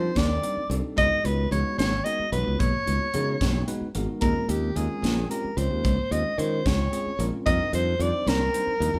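Swaying in a compound metre, this short excerpt of electric jazz fusion feels soaring and bright as a soprano saxophone leads up front with vibrato, scooped notes and a soft attack, floating over shifting suspended thirteenth chords voiced on a bell-like tine electric piano. A growly, up-front fingered electric bass anchors the low end, while a polished fusion drum kit with a high-tuned snare, tight kick and hi-hat drives the groove and very quiet, ringing congas struck with hard hands add colour from 0.2 seconds. The band sounds as if playing live together in one room, touched by light reverb.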